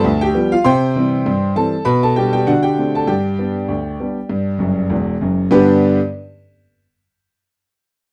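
Ragtime piano in a lively, jaunty mood, this short excerpt is cut from a longer piece and moves in a lightly swung 2/4. A solo grand piano carries everything, spanning from deep bass notes up into the high treble, with a warm, intimate tone that sounds boxy and sits up front, its action noise clearly audible. The harmony passes from a G7 through C and G/B to D7 before settling on G, and a brief piano fill around 4.6 seconds leads into a new section at 5.5 seconds. The piano stops at 6.0 seconds. The recording has a dry, close 1970s-style studio character with only a light touch of reverb.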